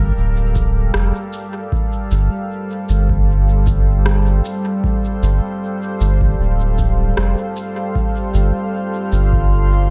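A round, sine-toned sub bass sits up front in this hazy, spacious ambient dub excerpt, beneath a deep, moody, detuned sawtooth pad carrying sustained Gm7 and F chords with chorus, reverb and vintage 12-bit sampler grit, while an analog-flavoured electronic kick enters in the background at 0.6 s alongside a tape-toned shaker and rim click trailing dub echo, and a glassy texture of drifting overtones, also with chorus and reverb, appears at 8.7 s in an echo-heavy mix.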